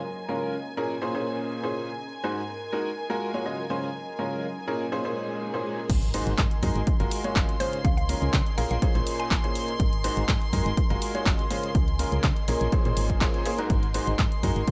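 A bright, woody upright piano sits up front, its slightly detuned riff ringing with long sustain and a dub echo from 0.3 seconds in this feel-good, uplifting piano house excerpt. Around it, a chamber violin section holds high sustained chords with light vibrato and a reedy gut-string tone, while a cloudy, blurred granular pad drifts in the background through its own reverb, both pumping with the sidechain alongside the piano. A background electronic swell and impact leads into the drop at 5.9 seconds, where a dry, punchy kick lands up front with a dry analog drum machine supplying crash cymbal, handclaps and hi-hat in a small room. A dark, round FM bass with a fast attack enters at the same moment, pumping under the kick. At 7.6 seconds a mellow, mallet-like synth pluck adds a brief melody in the background, softened by chorus and dub echo. The chords circle through lush major-seventh and ninth voicings, and the whole mix carries a light digital ambience.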